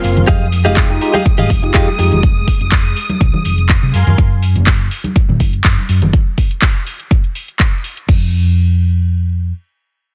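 A filtered disco house excerpt in F minor at 123 BPM opens on a groovy, nostalgic drop, with a clean tine electric piano through a combo amp, a picked, compressed direct guitar riff and lush bowed strings with vintage 12-bit sampler grit all pumping against the sidechain over a dark, round hollow-body bass, metallic-hatted house kit, soft-handed maracas and congas in the background, and a punchy, tape-warm electronic kick that enters at 0.3 seconds. The piano and guitar stop near 2 seconds, the strings, percussion and drums drop away in turn, and the bass outlasts them all to 9.5 seconds in a dry mix.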